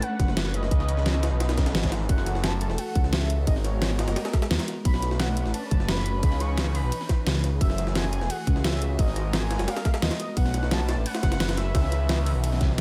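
A light reverb and digital ambience frame this dreamy, rolling slice of liquid drum and bass, cut from a longer piece and moving at 174 BPM in a straight 4/4 in F# minor. A velvety synth lead carries the melody between C#5 and C#6, its detuned sawtooth and triangle tone smoothed by chorus, vibrato and analog delay, while a distant studio string section holds sustained bowed chords in the background with vibrato, soft attacks and expressive portamento. The harmony cycles through minor ninth and seventh chords, from Bm9 to C#m9, F#m7 and G#m9 and around again. Entering at 0.2 seconds, an up-front, menacing saw bass in unison sits low between E1 and D#2, its detuned, saturated tone evolving through a filter swell. The rhythm is layered: a tight, tape-warm electronic kick sits up front, a pop drum kit adds hi-hat, ride and a deep, overdriven snare with a small-room character, and a gritty, pitched-up jungle sampler-style kit lurks behind with compressed hats and a high-tuned snare, both filtered in the high-pass.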